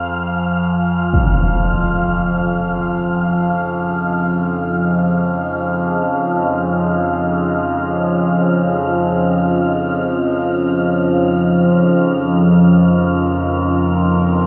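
Bathed in a cavernous cathedral reverb, this ominous, vast dark ambient drone excerpt drifts in free time, with a resonant, wave-folded drone of moving overtones up front under a phaser, a deep, detuned pad fading in across its full 14.5 seconds as it shifts from Fm to Db/F, an airy, breathy wind-like noise texture hovering high, and a single huge, bright, low-passed impact striking at 1.1 seconds.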